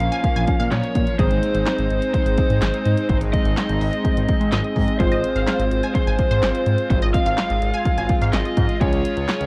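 Nostalgic and bright, this synth-pop passage is cut from a longer piece and moves in a straight 4/4 over a worn, warbling cassette sound with audible pitch drift, light reverb and digital ambience. A punchy analog drum machine sits dry and up front with kick, snare, hi-hat and handclaps, while a smooth, saturated synth bass built from detuned sawtooth and square waves carries the low end. A funky polysynth comp adds mellow, chorused chords with a filter pluck and sub octave, and a shimmering pulse-width pad holds sustained retro chords beneath it. An overdriven lead guitar through a small cranked amp takes the melody with a dark, picked tone. A lush unison pluck with phaser and tape echo appears briefly at the start and returns from 5.1 to 8.3 seconds as a second line above the harmony, which moves from Bbm to Ab, Fm/Ab and finally Db.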